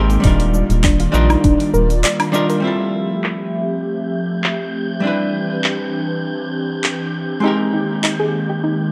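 A lightly swung sixteenth-note groove from a deep house kit with dark, filtered hi-hat, handclaps, cabasa and woodblock, joined by a layered electronic kick and a round analog bass that both drop out by 2.0 s, underpins this smooth, dark sunset chillout excerpt, where a clean hollow-body archtop guitar with tape echo accompanies up front beside an airy, breathy chorused pad that takes a filter sweep from 2.6 s, a soft, gentle pluck plays chorused arpeggios with tape echo and cassette colour near the start and end, and a faint wind-like noise texture drifts in at 3.4 s, all set in a lush hall reverb.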